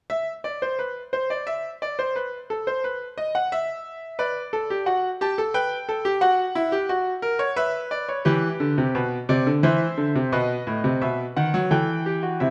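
A bright concert grand piano sits up front, playing solo throughout this contemplative, solemn classical piece, a baroque-style fugue in three voices and triple metre. Its tone is brilliant and present, with a deep bass and a range from A2 to A5. The opening line is unaccompanied by harmony before the chords begin to move at 4.2 seconds, passing through Bm, Gadd9 and F#7, then returning to Bm on the way to Em. A later turn through Cadd9 and B7 settles onto Em at 11.7 seconds, lending the passage a grave sense of arrival. The piano rings out in a reverberant stone room, and the recording is cut from a longer work.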